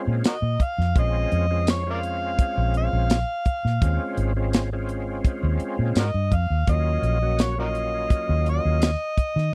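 An overdriven, amplified harmonica takes a jazz-style solo full of tongue slaps and scooped notes over a thick tonewheel organ swirling through a slow rotary speaker, a dark, foam-muted round bass and a tight, polished funk kit with tambourine, in this smoky, soulful slice of straight-eighth soul blues that moves from Bbm7 to Ebm7 at 6.7 seconds within a dry, close 1970s-style sound.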